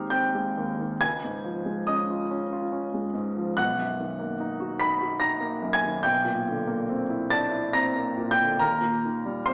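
A clear, intimate grand piano sits up front with its action noise audible and a natural tone, playing alone across this 9.5-second fragment of a dreamy, serene impressionist classical piece at 71 BPM in 3/4, its rubato leaving the beats uneven as the harmony drifts from Abmaj7 through Dbadd9, Bmaj7 and C9/Cb to Eb6 over a range from Ab1 to B6, heard in a wet stone-room reverb with a small-speaker sound.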